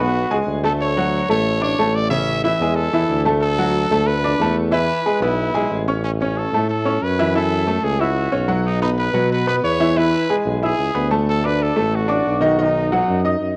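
Salsa in A major at a brisk 183 BPM, this sunny, festive excerpt from a longer piece sets a raspy, growling trumpet with light vibrato out front on the melody over a brilliant, woody upright piano that is slightly detuned and full of audible action noise, both carrying a cassette-tape colour, while a clear tuba holds down the bass throughout, the whole home recording sitting in a small room with light reverb and shifting to a new section at 6.0 seconds.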